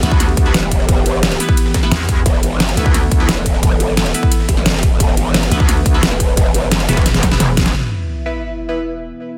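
A tense, mechanical slice of dark technical drum and bass at 175 BPM in E minor opens mid-drop, with a deep, detuned analog pad pumping under its chorus, a nasal, band-passed chord stab with phaser and digital delay in the background, and an FM-edged metallic wobble bass that cuts out at 3.3 seconds and returns at 5.5 seconds. Beneath them a saturated, growling bass with a formant filter sits up front beside a punchy, overdriven kick and an overdriven dubstep kit with a deep snare and metallic hats, while a gritty, very quiet breakbeat kit with a high-tuned snare adds texture. A drum fill leads into a band accent at 7.7 seconds, where a sub drop and impact take over as a filter sweeps the stab and the pad holds through the end of this dense, heavily limited mix in light reverb.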